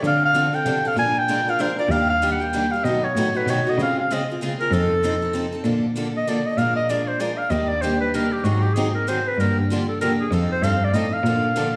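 Charming and swinging, this excerpt of acoustic jazz manouche in three-time pairs two bright, boxy picked parlour steel-string guitars with audible finger squeak as accompaniment under a single rich, focused cello bowed with vibrato on the bass line, while an up-front clarinet with clear tone and light vibrato carries the melody and takes a jazz-style solo from 5.6 s, all set in the wet reverb of a recital hall.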